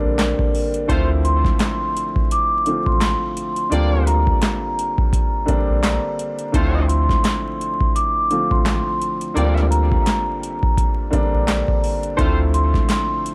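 Tough yet reflective, this boom-bap hip-hop passage in D minor moves at 85 BPM in 4/4 with a 60% swing on the sixteenths, cut from a longer piece. A booming analog drum machine sits up front from 0.2 seconds, its deep kick, crisp snare, metallic hi-hats and handclaps overdriven and re-recorded in a small room. Underneath, a round analog bass with a fast attack holds sustained, dark low notes, while a mellow, vintage baby grand piano voices the shifting Dm7 and Bb6/D harmony in its middle register. Over the top, a vibraphone played with soft mallets carries the melody with a ringing tone and slow motor vibrato, filtered to a band-limited sound and touched with analog delay. A tight, punchy horn section enters at 0.9 seconds with octave-doubled stabs, also filtered and echoed by analog delay, and a bed of vinyl crackle sits beneath it all.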